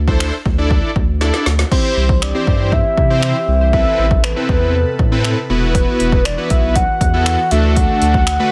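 A big, bright, detuned sawtooth polysynth with a vintage warble pumps alongside a thick, saturated sub bass and a punchy, up-front deep house drum kit of woody snare, dark hats and finger snaps in this carefree, upbeat dance-pop passage cut from a longer piece. After a drum fill at 1.2 seconds, a mellow, round octave-layered synth lead with vibrato and chorus enters at 1.7 seconds, joined by an airy, breathy pad in the background, as the chords move from C through Amadd9 and Esus2 to D.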